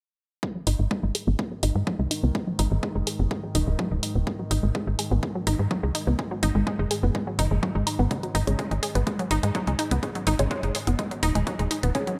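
This melodic techno excerpt has a dark, hypnotic mood and a steady, straight pulse, cut from a longer piece. Up front, a heavy, layered electronic kick drum, re-recorded in a large room, drives the groove with a roomy electronic hi-hat. A tight, punchy sequencer bass built from sawtooth and square waves with ring modulation sits prominently in the mix, pumping against the kick as a filter sweep runs across it. A lush, warbling unison pluck carries bright, detuned arpeggios with a noise layer, sidechain pumping and delay, while its own filter sweep moves throughout. Beneath them, a very quiet analog drone adds a slow-attack, chorused pad with pulse-width modulation. At 8.1 s a muted, deep dub chord stab enters, its mellow sub-octave tone coloured by phaser and delay, all in a bright 1980s-style digital production with light reverb.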